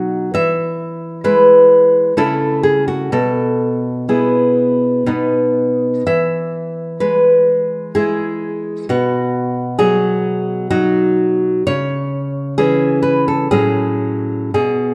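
Set in a moderate recital-hall reverb, this sunny, tender excerpt of a romantic classical piece features a solo nylon-string guitar, fingerpicked up front with a warm acoustic tone, drifting in a rubato 3/4 at 55-69 BPM in E major through chords from E and A/C# to B, C#m and F#m/A.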